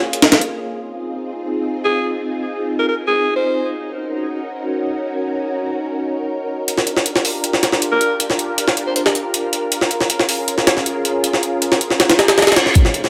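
A growling alto saxophone takes the lead in this atmospheric, frenetic drum and bass piece with a jungle edge, cut from a longer track at 158 BPM in 4/4. Its raspy, jazz-style solo line, with vibrato and scooped notes, sits up front from 1.8 seconds and trails a dub echo. Alongside it, a silky vintage string machine, also up front, holds dark, sustained chords throughout, shimmering with ensemble chorus as the harmony moves from Bbm7 through Fm7, Ebm7 and Gm7 before returning to Bbm7. The gritty, sampler-style jungle kit, pitched up and overdriven with a thumpy kick and high-tuned snare, flickers in briefly at the start and returns in full at 6.7 seconds. A background reverse cymbal rises into the final moments, where a thick, detuned saw bass enters at 12.8 seconds on a low F. A lush hall reverb gives the whole piece a spacious, hazy feel.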